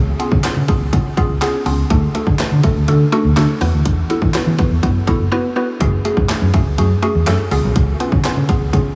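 Bittersweet yet confident, this short dance-pop cut from a longer piece moves in a straight four-beat groove through a chord cycle of C#7, D, Esus2 and F#madd9 before returning to C#7. A woody, mallet-like FM synth pluck sits up front with a fast attack and a decaying tail, its mellow tone carrying a noise layer and treated with chorus, phaser and sidechain pumping. Beneath it, a vintage muted fingered electric bass gives a dark, round, foam-muted line through an amp, also pumping with the sidechain. The house drum kit enters at 0.2 seconds with a punchy kick, cracking snare, hi-hat and handclaps, sounding layered and electronic yet re-recorded in a small room and placed up front. A brief silent gap between 5.3 and 5.8 seconds breaks the flow before the band resumes, all inside a light reverb with small room ambience.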